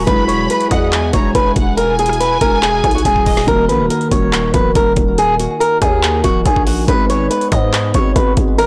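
Eerie and melancholic, this half-time trap excerpt at 141 BPM in Eb phrygian sets an up-front, boxy fingerpicked swing-style acoustic guitar melody with digital delay over a growling, buzzy 808-style bass, a knocking, woody trap drum kit with metallic hats that fills at 3.1 seconds, a felt-muted upright piano and a distant, dark French horn section in the background, while a lush, bowed violin section with delay carries a second line only until 3.5 seconds, all in a blown-out, overdriven recording with light small-room reverb.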